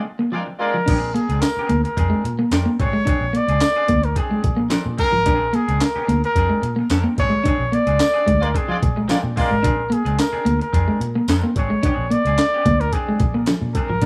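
A dry, rough home-demo recording of energetic funk, cut from a longer piece, opens on a Bb9 band accent where a twangy clean electric guitar riff and a quieter, bright hollow-body semi-hollow guitar meet a brief, tight vintage horn-section line; a breathy, scooped jazz-style trumpet with tape echo carries the melody up front from 0.6 seconds, and from 0.9 seconds a gritty, compressed breakbeat sampler kit with thumpy kick, high-tuned snare, hi-hat, handclaps and crash joins a dark, round foam-muted fingered bass, while a jingly tambourine sits in the background and the clear horns return around 8.4 seconds during another band accent.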